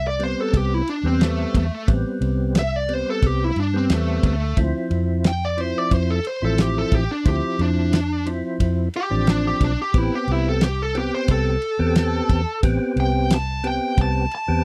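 Soul blues in A minor at 89 BPM, mournful and smoky, with a smooth overdriven lead guitar soloing over a foam-muted, punchy fingered bass, a mellow percussive tonewheel organ through a slow rotary speaker with chorus vibrato, and a damped 70s drum kit with a fat snare and dark cymbals, all captured dry and close in a 1970s-style studio as the chords move from Am7 to Dm7 at 4.6 seconds and back at 9.9 seconds.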